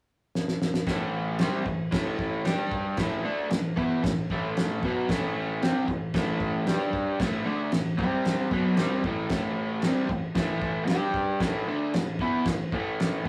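A straight 4/4 pulse at 114 BPM drives this raw, menacing garage rock excerpt in A minor, where a cloth-damped, thuddy drum kit with a fat snare, tight kick and dark crash cymbal opens with a brief fill before a crunchy, double-tracked overdriven electric guitar enters at 0.9 seconds with a picked riff circling Am, G5, A5 and C5, all caught in a rough rehearsal-room recording with warm saturation and small-room ambience.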